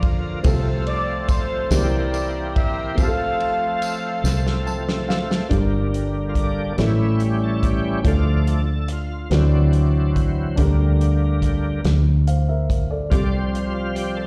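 A bright, shouting tonewheel organ with key click, chorus vibrato and a slow rotary speaker drives this reverent, soulful slow gospel piece in 6/8, cut from a longer performance. At first a mellow, vintage horn section with light vibrato carries the melody up front until 4.7 seconds, while the lightly overdriven organ holds sustained chords beneath it. A deep, smooth concert grand with short sustain plays the accompaniment, and a foam-muted fingered electric bass sits forward in the mix. A soul drum kit with a fat snare, tight kick and dark cymbals keeps time, and a jingly tambourine joins at 0.4 seconds for the opening stretch. Drums and piano play fills just before the organ takes a solo at 5.5 seconds over a minor-leaning progression, and the whole performance sounds like a live gig heard through the venue's PA, with slapback echo on the horns and piano.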